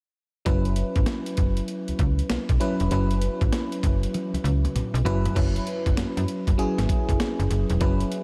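At 0.5 seconds, a slick, confident new jack swing groove begins with drums, bass and electric piano together on an F#7sus4 chord, moving at 98 BPM in 4/4 with a swung sixteenth-note feel. The breakbeat sampler-style kit sounds gritty and compressed, with a thumpy kick, a medium-tuned snare, hi-hat, crash and toms, and a tape-tinged character from being re-recorded in a small room. Up front beside it, the slap-like FM bass gives snappy, metallic attacks that decay in the low register, while the FM electric piano adds glassy, bell-like chords with a full body, a noise layer and a chorus shimmer. A drum fill from 4.1 seconds leads into a new section, and the bass drops out at 8.0 seconds as the piano and drums carry on briefly. Light digital reverb gives this short R&B cut a polished, close sheen.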